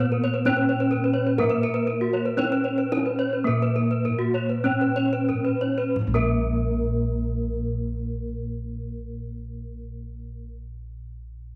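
Balinese gamelan, hypnotic and shimmering, in 4/4 at 44-69 BPM, slowing over its first 5.9 seconds as a dark, smooth, up-front bronze metallophone carries the melody over round, airy bossed gongs in the bass, while two ringing metallophones in paired tuning spin arpeggios above, one boxy and small-roomed, the other bright, and a very quiet, distant kendang played with soft hands drops out at 6.6 seconds, all set in a moderate spring reverb.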